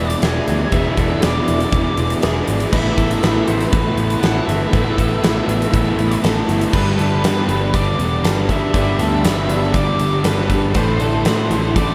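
A straight 4/4 pulse at 120 BPM drives this brooding, dreamy shoegaze and dream pop excerpt, with a huge arena drum kit entering at 0.1 s and sitting up front with a fat snare, punchy kick and bright cymbals beneath a dark, round, foam-muted picked bass. Two overdriven guitars stack riffs in the background, one crunchy with reverse reverb and one lush with chorus, joined by a third that is double-tracked and very quiet. A very quiet twelve-string electric adds clean, twangy, compressed arpeggios, and an octave-fuzz lead carries the melody with distortion and analog delay. The chords move from E7 to Asus2 and then to G6 at 6.7 s, all bathed in a huge ambient reverb that soaks the mix.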